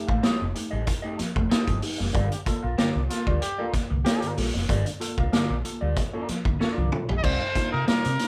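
Recorded live in one room with light reverb, this short funk cut has a driving, sly feel, anchored by a saturated, gritty vintage drum kit up front and a round, amped fingered bass. A worn, slightly out-of-tune tine electric piano adds stabs through overdrive and phaser, while a lo-fi guitar through a small old amp plays wah accompaniment and a dark guitar at the edge of break-up carries a riff in the background. A bright trombone with vibrato plays a brief second line at 2.3 seconds, and after a drum fill at 6.6 seconds a present, jazz-style trumpet takes a solo at 7.2 seconds over a shift to Cm11.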